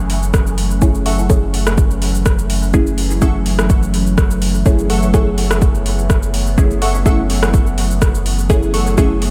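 Lightly reverberant and hazy, this short dub techno excerpt sits in F# minor at 125 BPM in 4/4, with a gentle 54% swing on the sixteenths and a hypnotic, deep mood resting on a single F#m7 chord. A warbling, lo-fi tape-like pad holds sustained chords from the start, its slow attack and long release colored by chorus, phaser, built-in reverb and sidechain pumping, while a pure sine sub bass drones on F#1 with smooth, dark weight and a touch of tube saturation. An overdriven electronic kick enters at 0.3 seconds and sits up front, re-recorded in a large room, alongside a deep house kit of cabasa, metallic hi-hats and rim clicks treated with overdrive and dub echo. From 0.8 seconds a muted, detuned sawtooth-and-pulse dub chord stab plucks short chords through phaser and echo, and at 1.1 seconds a crisp, wave-folded wavetable stab adds higher, decaying chords with its own dub echo and pumping. 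A filter sweep on a synth stab runs the whole length, keeping the texture in motion.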